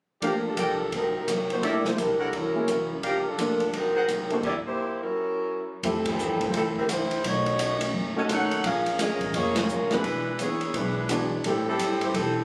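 A mellow saxophone section carries the melody up front from the outset of this joyful big band swing excerpt at 171 BPM, over a clear upright piano with audible action noise, a picked parlour steel-string acoustic guitar in the background, a dark, smooth jazz drum kit with a boomy kick and a woody, thumpy pizzicato upright bass, while tight trumpet section stabs punctuate until 4.0 s, a stop at 4.4 s and a band accent at 6.0 s mark the way, all heard in a moderate hall reverb as if from a phone in the room.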